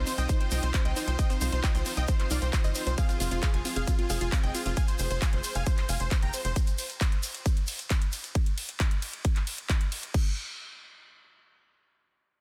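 An uplifting trance drop at 134 BPM opens on a huge, detuned supersaw lead that carries an emotional, bittersweet melody over Cm and Fm chords, treated with digital delay and sidechain pumping. Around it sit a lush supersaw pad holding airy chords, a tight, nasal sequencer bass driving up front, and two unison plucks: one in the background carries a second line, and a very quiet one plays delayed arpeggios until 4.7 s. A punchy, layered electronic kick sits alongside a big-room kit of metallic hats, handclaps, ride and crash, with a grainy tube shaker that stops at 8.3 s; after the melodic parts fall away at 6.5 s, the drums carry the final seconds of this dry, densely limited mix, which is cut from a longer piece.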